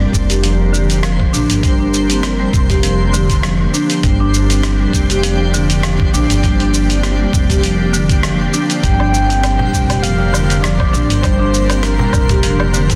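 Hypnotic and warm, this organic downtempo excerpt settles at 100 BPM in G minor with a gentle swing on the sixteenths, resting on a single Gm7 chord throughout. A cloudy, evolving granular pad holds sustained chords with its own reverb and a sidechain pump, while a twinkling, bright granular texture adds octave-up shimmer. Woody marimba with rosewood bars plays arpeggios through a delay, and a growly pizzicato upright bass sits up front beneath. A gritty, tape-toned sampler-style kit of hi-hat, rim click, shaker and woodblock, with soft clipping on the snare, joins a thumpy electronic kick from 0.1 seconds. At 8.8 seconds a breathy, flute-like synth lead enters with lush chorus, vibrato and delay, and a very quiet clay-shelled darbuka follows at 9.3 seconds, all within a dense, heavily limited modern master and light reverb.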